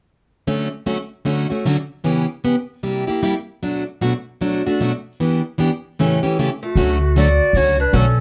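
Close, detailed microphones and light reverb frame this lively, playful swing excerpt, where a full-bodied plugged-in dreadnought guitar, with its finger squeak, picks the chords alone from 0.5 s. At 6.6 s a mellow, vintage-toned clarinet with vibrato, subtone and plate reverb takes the melody up front, while a bright, boxy parlour guitar adds a quieter second line, and from 6.8 s a woody, thumpy pizzicato upright bass enters.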